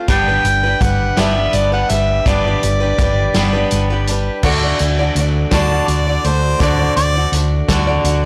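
Nostalgic and warm, this folk rock and heartland rock excerpt rolls along in a straight 6/8 at 55 BPM (dotted quarters) in D mixolydian, moving from a G chord to D. A boxy, picked parlour steel-string acoustic guitar and a clean, scooped, twangy electric guitar riff carry it throughout. Beneath them sit a round, punchy hollow-body short-scale electric bass, played fingered and up front, and a vintage kit with a punchy kick, a medium-tuned snare, hi-hat and dark crash cymbal. An amplified, gritty overdriven harmonica leads the melody with tongue slaps, scooped notes and light vibrato through analog delay until 3.7 s. The second half opens at 4.4 s with a harmonica solo and an open, long-sustaining baby grand piano in the background, which plays a short fill near the close, while a clear, classical-style harmonica with light vibrato comes up front at 5.5 s. Light reverb and studio ambience frame a blown-out, overdriven recording.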